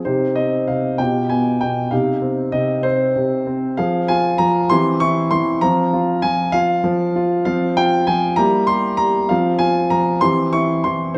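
A concert grand piano carries this short piece alone, its tone warm and open, with a deep bass, long sustain and a close, up-front presence. The music is a classical-period sonatina in 6/8, moving at a slow 65 beats per minute counted in dotted quarters, and the playing takes a flexible, rubato feel. The mood is elegant and serious: it begins in C minor and shifts to F minor at 7.5 seconds, with harmonies such as a diminished chord adding tension late in the passage. The piano spans a range from the low B2 up to Db6. A moderate recital-hall reverb surrounds the instrument, and a faint mains hum sits underneath. The 11.2-second passage is cut from a longer work.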